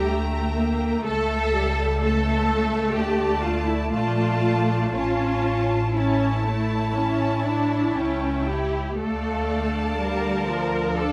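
Classical slow romantic movement for string orchestra, a yearning, melancholic passage cut from a longer piece, moving with a rubato feel over a minor-key progression that settles on Dm at 9.0 seconds. A focused violin section carries the high melody while a distant, lush second violin line sits just beneath it, and a rich viola section fills the middle with vibrato-laden accompaniment. Smooth, up-front cellos with vibrato and double basses with light vibrato anchor the bass, all heard together throughout in moderate studio reverb.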